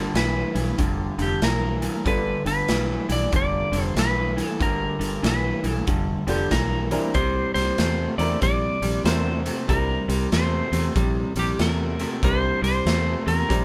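This sounds like a band playing live in one room, with light reverb and a raw feel. It is a soulful, gritty electric blues shuffle with a swung lilt, cut from a longer piece. A clean lap steel guitar carries the melody with warm slide lines and volume swells. Beside it, a dark, slightly broken-up electric guitar through a small old amp picks a low riff, and a round, foam-muted fingered bass sits underneath. The saturated garage drum kit sits up front in a bright, pumping stone room, with a punchy kick, a medium-tuned snare and hi-hat. A clear but worn grand piano with short sustain accompanies in the background, dropping out at 2.4 seconds and returning at 6.3 seconds, just before the harmony moves from G9 to C9 at 7.1 seconds.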